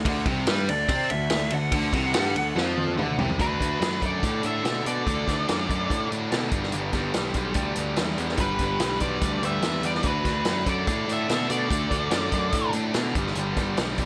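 Blues rock in a power-trio and southern rock vein, this gritty, driving excerpt runs at 144 BPM in 4/4 with a straight feel in D major, moving between D and G chords. A vintage acoustic drum kit sits up front with a punchy kick, medium-tuned snare, toms, and dark cymbals across hi-hat and ride. Beside it, a biting, double-tracked overdriven guitar picks the riff, while a bright, growly fuzz bass holds the low end. The opening 3.4 seconds feature a lead guitar solo capped by a drum fill, after which an octave-fuzz lead guitar carries the melody until 12.7 seconds. Beneath it, a dark, smooth overdriven lead guitar plays a second line in the background, and a very quiet tonewheel organ holds thick, sustained chords with key click and a slow rotary speaker. A small room ambience surrounds the band.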